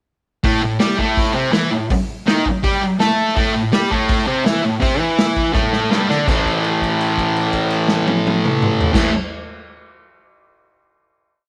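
A thick, bright, double-tracked fuzz guitar sits up front with a raw, swaggering octave riff over a vintage acoustic kit of punchy kick, dark cymbals and a pumping small-room sound, and after a drum fill from 5.5 seconds the garage rock piece lands on a held final chord at 6.3 seconds, soaked in a moderate echo-chamber reverb.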